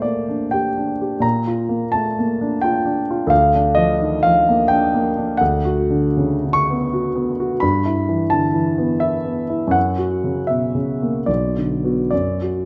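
Close, detailed microphones place a concert grand piano up front in a recital hall with moderate reverb. This is a romantic classical character piece for solo piano, cut from a longer work, with a stormy, passionate mood. The tempo moves freely in rubato, somewhere between 70 and 89 BPM in 3/4. The piano's tone is warm, with a deep bass and short sustain, and its range stretches from B1 up to C#6. The harmony opens on G minor over B-flat and dwells on B-flat, then turns toward B minor at 5.4 s, passing through E minor and F-sharp before settling on B minor, with the chords falling away at 12.1 s.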